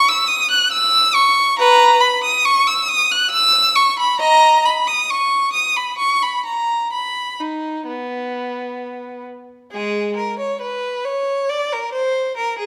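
A single violin rings out up front in a recital hall with moderate reverb, its tone rich and focused with vibrato. This short cut from a longer baroque-style suite movement for unaccompanied violin sits in B major and 3/4 at 63-70 BPM, moving with a rubato, dance-like lilt and a radiant mood. The bowed line ranges from G#3 up to F#6, and its opening material returns at 9.7 seconds before the clip ends at 12.7 seconds.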